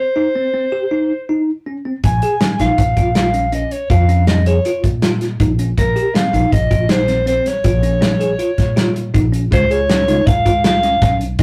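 A mellow soprano saxophone opens the excerpt at 0.0 seconds, carrying a jazz-style solo melody with vibrato, a roomy tone and a slapback echo. A moment later, a bell-like tine electric piano adds clean, bright arpeggios beneath it. At 2.0 seconds, a pizzicato upright bass with a woody, growly steel-string sound enters alongside an up-front studio drum kit with a punchy kick, medium-tuned snare and hi-hat. Together they drive this tense, progressive instrumental at 160 BPM in 5/4, moving through Bb minor harmony. At 9.5 seconds, the music shifts to a Db chord and a tonewheel organ appears briefly, clear and clicky, with chorus vibrato and a slow rotary speaker. The whole clip has the rough, saturated feel of a rehearsal-room recording with moderate booth ambience.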